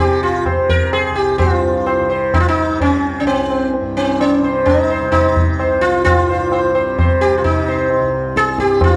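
A dark, warm production set in a moderate recital hall reverb frames this short cut from a longer Hindustani classical piece in raga bhairavi on C, its mood longing and solemn, moving in 5/4 at 129 BPM and speeding up throughout. The up-front sitar carries the melody between C4 and C5 with a bright, buzzing, shimmering tone ringing with sympathetic strings, over a softly plucked tanpura drone low in the mix. From 0.5 seconds a close, high-tuned tabla adds ringing percussion.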